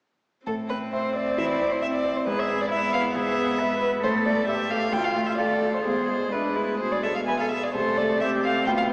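Restless and urgent, this brief excerpt from a quick classical-period movement for piano quartet unfolds with a rubato feel, moving from A minor through D minor and E before settling on A minor over C. A pure, floating violin carries the melody up front with a soft-attack sul tasto tone, while a polished, present baby grand piano and a close, intimate viola in the background supply accompaniment; from 1.4 seconds a cello adds a second line with an airy bow and light vibrato. A wet cathedral reverb surrounds the players, though the overall sound comes across as if heard through a small speaker.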